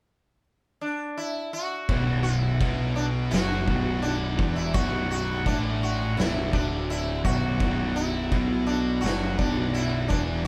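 Heavy and hypnotic, this stoner and doom metal excerpt at 84 BPM in B minor opens with a buzzing, shimmering sitar melody at 0.8 s, ringing with sympathetic strings, before the full band crashes in on a B minor chord at 1.9 s: two thick fuzz guitars, one warm and set in the background and the other dark, drive the distorted riff, a punchy, overdriven picked bass growls beneath, and an oversized low-tuned acoustic kit with a fat snare, punchy kick and dark cymbals sits gritty and saturated behind them, all captured as a live band in one large studio room with moderate reverb.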